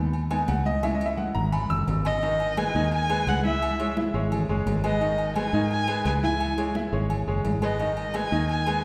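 Fiery, danceable salsa at 172 BPM in G# minor, cut from a longer piece, moving between G#m and C#m. A bright, woody upright piano with audible action noise opens with a solo over a round, dark electric bass, while ringing agogo bells and timbales play alongside distant, high-tuned congas that sit in the background, with a drum fill from 0.8 to 2.2 seconds. At 2.1 seconds a bowed erhu enters up front, smooth and boxy with vibrato and portamento, all set in the wet reverb of a church or concert hall.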